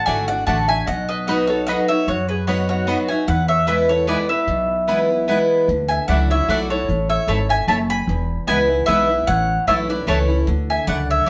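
A lively, rustic bluegrass waltz at 150 BPM in E mixolydian opens with a woody, double-strung mandolin melody up front, a bright picked steel-string acoustic guitar accompanying, and a mellow, nasal lap resonator guitar playing a metallic slide second line with fingerpicks. From 0.1 seconds a second picked mandolin adds stabs beneath, while a dark, growly upright bass thumps out pizzicato lines. The band sounds live in one room with a wet studio reverb, moving through chords such as D, Dadd9, A and E in this short cut from a longer piece.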